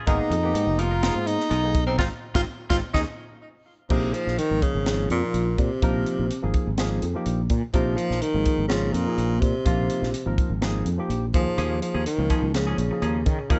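A straight 4/4 groove at 125 BPM drives this funky, bright slice of electric jazz fusion, cut from a longer piece. A breathy tenor saxophone carries the melody up front, close-miked with vibrato and a soft subtone, while a growly, punchy fretless electric bass with subtle chorus sustains beneath it. A crisp, airy, polished drum kit recorded in a studio room, with a high-tuned snare, punchy kick, hi-hat and crash, keeps time, and a barky tine electric piano, lightly overdriven through a combo amp with analog chorus, fills out the accompaniment. A clean, compressed semi-hollow guitar adds picked stabs from the start to 3.0 seconds and returns at 11.6 seconds. The band hits an accent at 2.0 seconds, capped by a drum fill at 3.4 seconds, before the harmony settles onto Bb9sus4 at 3.9 seconds and later moves to Eb9sus4, all bathed in light reverb.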